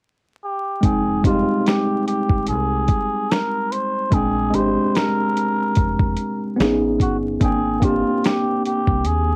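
Hazy and melancholic, this lo-fi hip hop excerpt drifts at 73 BPM in F dorian with a gentle swing on the sixteenths. A cup-muted trumpet opens alone at 0.4 seconds, carrying the melody up front in a veiled, raspy jazz voice with light vibrato and a growling edge, colored by cassette tape. At 0.8 seconds the rest of the band arrives: a worn, slightly out-of-tune tine electric piano, lightly overdriven and heard as if through its built-in speakers, lays down chords that move from Fm9 to Bb13 and then slide through Amaj9#11 to Abmaj9#11. Underneath, a deep dub fingered electric bass sits round and punchy, while a gritty, compressed sampler-style drum kit puts a thumpy kick, medium-tuned snare, hi-hat and finger snaps up front. The whole piece carries the feel of a home recording on cassette, with vinyl crackle and light reverb softening the room.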